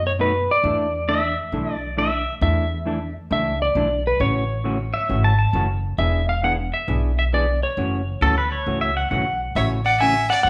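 Western swing country at 134 BPM with a playful, swinging feel, this short cut from a longer piece features a dark, clean lap steel carrying the melody up front over a woody, growly upright bass and a hollow-body jazz guitar comping softly from 0.2 s, while a twangy pedal steel adds a second line from 1.1 s to 9.4 s and a biting, nasal fiddle takes over that role at 9.6 s, all caught live in one room with moderate large-studio reverb.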